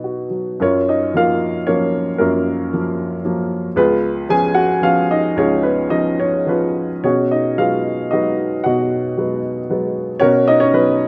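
Warm and relaxed, this short excerpt of lyrical classical solo piano moves at 113 BPM in a flexible 3/4, its rubato giving the phrasing a gently breathing pulse. A single upright piano carries the whole piece, sounding woody and up front, spanning from C#2 up to G#5. The music sits in F# major, and the harmony drifts through F#maj7, C#7 and G#m7/B before settling onto Bmaj7 near 10.2 seconds. A moderate recital hall reverb surrounds the instrument, lending a soft sense of space around its close, intimate tone. Lasting about 11 seconds, the fragment is cut from a longer piece and feels like a tender passing thought.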